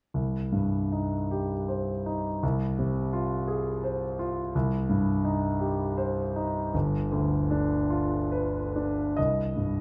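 A warm, polished grand piano sounds up front from the very start in this mournful, melancholic romantic nocturne in C minor, moving in a rubato 12/8 at roughly 45-58 BPM through brooding harmonies from Cm to Fm/C, back to Cm, then G7 before settling on Cm at 9.2 seconds, all bathed in a wet recital hall reverb in a brief excerpt cut from a longer piece.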